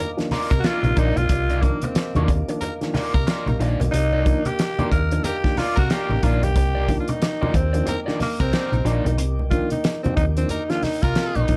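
A growling, breathy tenor saxophone leads this hypnotic funk excerpt over a single Cm11 chord, joined by a second raspy tenor line and backed by overdriven wah guitar that stops at 9.1 seconds, a mellow tonewheel organ through a slow rotary speaker, a woody upright piano with slapback echo, a fat-snared soul drum kit, soft-handed congas and a round hollow-body bass, all in light reverb.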